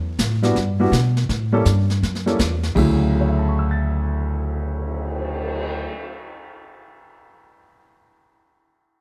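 An upright bass opens this short, relaxed jazz piano trio passage at 0.0 seconds, its plucked gut strings sounding woody and thumpy up front in a low register. A brushed drum kit follows almost immediately in a studio room, with dark cymbals, a medium-tuned snare, a boomy kick, hi-hat, a crash and a cymbal swell sitting lower in the mix than the bass. A warm, natural grand piano takes the melody from 0.4 seconds, ranging across a broad span of the keyboard and also placed up front. The harmony moves from Em to an A7 chord with its third omitted before settling on Dmaj9 at 2.8 seconds, giving the swung 4/4 feel an easy, unhurried glow under light reverb. Cut from a longer piece, the bass and drums drop out first, and the piano carries on alone until 6.8 seconds.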